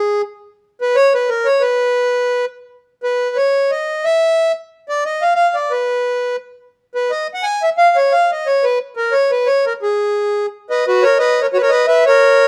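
Whirling and bittersweet, this brief musette waltz moves at a brisk 176 BPM in 3/4 with a straight feel, cut from a longer piece and tuned slightly low. A lone accordion carries the whole passage, its reedy single-reed voice clear and up front with a dry tuning and a boxy, small-room character, ranging from F#4 to G#5. A moderate stone-room reverb frames the live performance, and after an unaccompanied opening the harmony arrives at 10.8 seconds on B5 before settling onto a rootless G#madd11.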